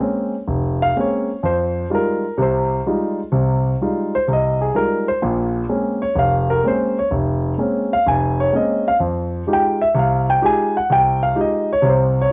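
A solo concert grand piano opens on a Bbm9 chord and carries this smoky, moody jazz excerpt in F minor at 127 BPM, swinging in 4/4 and moving between Bbm9 and Fm9 across its 12.3 seconds. The piano sits up front with a warm tone, deep bass and short sustain, ranging from F1 to Ab5. A cassette-tape coloring and moderate studio reverb give the home recording a hazy, intimate character.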